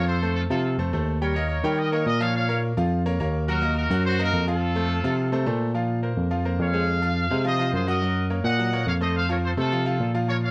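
Straight 4/4 salsa at 212 BPM in Bb minor anchors this passionate, danceable clip cut from a longer piece, with a barky tine electric piano carrying the bass line, its lightly overdriven tone direct and up front. A punchy, vintage trumpet section with vibrato plays the melody in a tight, pop-style blend, while a brilliant grand piano with short sustain supplies polished, present accompaniment. Light reverb frames the ensemble as the harmony moves through chords such as F, Ebadd9 and Bbm before opening onto Bbmadd9 at 5.7 s.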